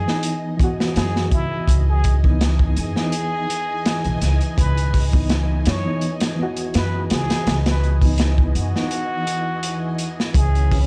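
A dark, studio-reverbed production with a rolled-off top frames this brooding, melancholic trip hop excerpt in C# minor, moving at 83 BPM in 4/4 with a light swing on the sixteenths over a C#m9 chord. Up front, a crunchy breakbeat kit with a tight kick, medium-tuned snare and hi-hat sounds saturated and gritty, while a pizzicato upright bass on gut strings gives a woody, thumpy low end. A jazz-style trumpet with a plunger mute carries the melody with a clear, wah-wah tone, light vibrato and tape echo. Beneath it, a reedy, worn electric piano, slightly out of tune and lightly overdriven with fast tremolo and tape echo, plays accompaniment until 9.3 seconds, and a vintage string machine voiced as cellos holds full, mellow sawtooth chords with a sub octave and ensemble chorus. A break arrives at 8.9 seconds, and at 10.4 seconds a reversed, detuned, granular texture rises dreamily in the background, bathed in its own reverb.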